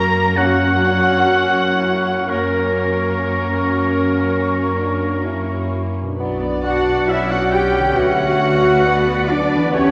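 Heard from farther back in a reverberant scoring stage, this solemn, melancholic passage from a slow romantic orchestral movement unfolds with rubato phrasing. Veiled, con sordino violins carry the melody while a clear oboe, a mellow clarinet, a second muted violin line and a pure silver flute weave secondary lines above dark muted violas and a punchy bassoon. A ringing harp plays arpeggios alongside muted cellos and lush double basses, with a mellow French horn section adding sustained chords from 0.4 s before the music moves into a new section at 6.2 s.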